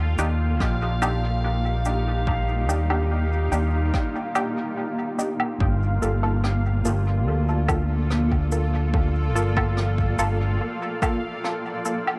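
An overdriven fingered electric bass sits up front in this meditative, deep ambient dub excerpt, its punchy, amped tone holding the low end at a relaxed 72 BPM in G minor until it drops out at 10.6 seconds. A natural-sounding acoustic kit of shaker, rim click and woodblock, sent through dub echo, comes in at 0.2 seconds, and beneath it an overdriven electronic kick, layered and re-recorded in a large room, enters at 0.6 seconds. A granular cloud pad holds sustained chords throughout, blurred, detuned and slowly evolving with a mellow, full-bodied glow and its own reverb. Muted, detuned chord stabs with a quick filter pluck add chorus and dub echo. A bright, resonant stepped-filter texture bubbles with random filter steps high above, softened by chorus and reverb. The harmony shifts from Ebmaj7 to Gm9 at 5.6 seconds, all set in light reverb and a gentle studio ambience.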